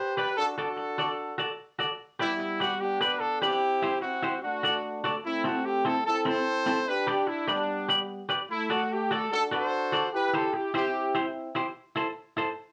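Captured live in one room onto cassette tape with a wet studio ambience, this bouncy, cheerful ska excerpt in G major at 148 BPM puts a punchy, smooth-topped horn section up front on a pop-style melody from 0.0 seconds, while a clean, compressed semi-hollow electric guitar, also up front, picks a hollow-bodied accompaniment over chords moving through D, G, C and Am until it stops at 12.5 seconds.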